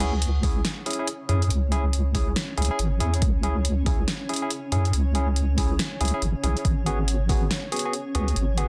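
A half-time deep dubstep groove at 140 BPM in 4/4 swings its sixteenths, set in C# minor and moving from C#m to G#m7 at 6.6 seconds in this short cut from a longer piece. The deep house kit supplies hi-hat and a fat, tape-tinged snare, while an electronic kick with a deep, layered thump sits alongside it from 0.4 to 7.4 seconds, both re-recorded in a small room. Up front, a deep, soft wobble bass built from square and sine tones wobbles darkly with a fast attack, thickened by chorus and tube saturation. A bright, barky tine electric piano fires clean, direct stabs through a dub echo, and from 1.1 seconds a granular cloud pad drifts in behind it with blurred, evolving, mellow sustained chords bathed in its own reverb. The mood is cavernous and meditative, captured nearly dry with a dense, heavily limited modern master.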